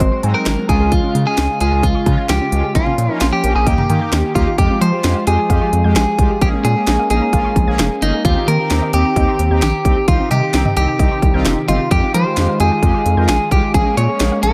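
Synth-pop with a cool, nocturnal mood, in which a clean, picked electric guitar carries the melody up front through dub echo over a punchy house drum kit of kick, cracking snare, crisp hats, cowbell and toms and a deep analog bass, while a bold, detuned synth brass and an airy pad with vibrato hold the background, a very quiet warbling pluck spins arpeggios, and the whole mix sits in spring reverb and heavy echo.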